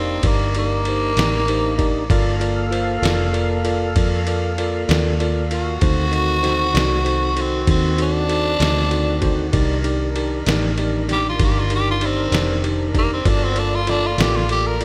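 Soulful and brooding, this slow blues in 12/8 moves at 65 BPM with a straight feel, cut from a longer piece and set in a lush hall reverb that gives it a big arena sound. A growling tenor saxophone carries the melody as a jazz-style solo throughout, raspy and up front with vibrato. Beneath it, a bell-like tine electric piano adds clean accompaniment touched with slapback echo, while a tonewheel organ holds sustained chords in the background through a slow rotary speaker and chorus vibrato. A vintage muted fingered electric bass sits up front, dark, round and foam-muted, and a trip hop sampler-style drum kit enters at 0.2 seconds with a thumpy kick, medium-tuned snare and ride cymbal, its pitched-down, compressed sound tape-warm and re-recorded in a small room. The harmony moves from a rootless Cm7 through D7b9 at 5.8 seconds, back to Cm7 and on to Gm7.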